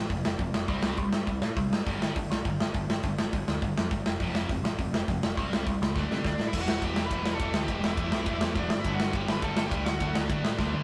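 Punk rock with an upbeat, rowdy energy, this short cut from a longer piece charges ahead in a straight four-beat feel. A growling, overdriven picked bass and a double-tracked, distorted electric guitar drive the riff with power chords, backed by a big acoustic drum kit that sits up front with a punchy kick, a medium-tuned snare, hi-hat, ride and bright crash cymbals. A drum fill at 6.0 seconds pushes the song into a new section built on minor and major chords. A high-gain lead guitar with a warm, picked tone enters at 6.3 seconds and carries a melody above the band until about 10.1 seconds. Light reverb and a rough rehearsal-room sound give the whole take a loose, live immediacy.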